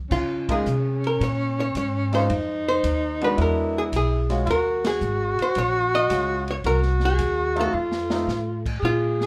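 A relaxed 4/4 swing with lilting eighth notes carries this brief cut from a longer small-group jazz piece, rooted in swing and bop and sophisticated, warm in mood. A clean, compressed hollow-body archtop guitar, picked and slightly dark, carries the melody in its middle register, while a breathy tenor saxophone sits up front on a second line, its whispered subtone, soft attacks, scooped notes and vibrato giving an intimate glow. Underneath, a woody, thumpy upright bass with gut strings plays pizzicato up front, and a clear grand piano with short sustain adds accompaniment from 0.5 to 8.3 seconds. The acoustic drum kit stays further back, with dark, smooth cymbals, a medium-tuned snare, a boomy kick and a rolled-off top, and the band hits accents together before a drum fill at 7.7 seconds. The harmony glides through rich extended and diminished chords, and moderate club reverb places the group in a snug, intimate room.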